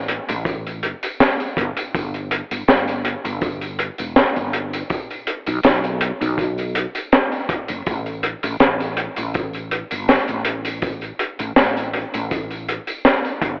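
A crunchy, gritty breakbeat kit of high-tuned snare, hi-hat and tambourine sits up front in this hazy, nostalgic, lightly swung vaporwave excerpt, joined at 0.5 s by a punchy, dark kick and underpinned by a round, mellow fretless bass with analog chorus, the whole mix bathed in lush hall reverb and the warbling pitch drift of worn cassette tape with a telephone-like tone.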